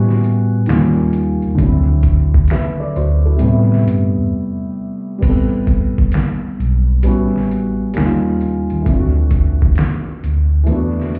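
Hazy and reflective, this lo-fi hip hop excerpt drifts at 66 BPM in A dorian with a swung 16th-note feel, its felt-muted upright piano dark and intimate, with audible action noise, thick felt and a cassette-tape, low-pass haze as it moves through chords such as A13, D#9, D7 and Am7. A mellow tine electric piano carries the bass cleanly and up front, while a gritty, pitched-down trip hop sampler-style drum kit enters at 0.1 s: thumpy kick, medium-tuned snare, hi-hat, finger snaps and crash cymbal, compressed and re-recorded in a large room. A break arrives at 4.3 s before the progression returns and closes on E7sus4, the whole mix sounding muffled as if heard through a wall, with light club reverb and cassette tape coloring.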